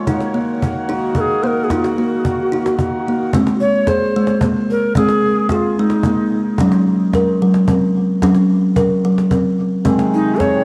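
A soft, woody kalimba sits up front through the whole clip, its fingertip-plucked arpeggios blurred by a diffuse ambient delay. This is gentle, meditative world music in 6/8 at 74 BPM, counted in dotted quarters, moving from Ebm to Ab, Gb and back to Ab. From 0.9 seconds a low wooden flute carries the melody, bright, reedy and airy, with vibrato, a tongued chiff and its own diffuse ambient delay. A hand-pumped harmonium breathes smooth sustained chords beneath the opening and returns briefly near the close. A quiet cajon keeps time with faint snares and a band-limited, vintage acoustic tone. The echo-chamber reverb and dark, warm production give this excerpt from a longer piece a roomy, enveloping calm.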